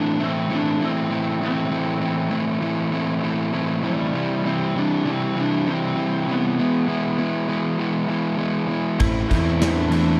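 A straight 4/4 pulse at 99 BPM drives this brooding, gritty classic rock excerpt in A minor. A hollow-bodied, overdriven semi-hollow guitar riff sits up front beside a dark lead guitar through a small cranked amp, which carries the melody over Am, C and E chords. At 9.0 seconds the rest of the band enters in a dry mix with little reverb: a round, fuzzy fingered electric bass up front, a gated 80s drum kit with a tight kick, medium-tuned snare and bright crash cymbal in an airy stone room, a raw garage guitar riffing in the background, a boxy parlour steel-string acoustic picked very quietly, and a reedy electric piano with tremolo that is barely audible.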